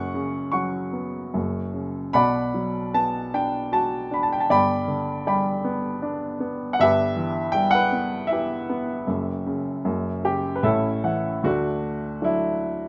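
The recording places a warm baby grand piano up front, with a natural tone and a light touch of reverb around it. This is lyrical classical solo piano, peaceful in mood, moving in a flexible rubato three-beat metre. The single instrument spans from F#1 up to C#6, and its harmony drifts from F#sus4 and F#5 through Bm, G and Em/G before returning to F#sus4. A short piano fill arrives at 10.3 seconds, leading through an A chord into a new passage that opens on D at 11.4 seconds. Cut from a longer piece, the fragment lasts just under 13 seconds.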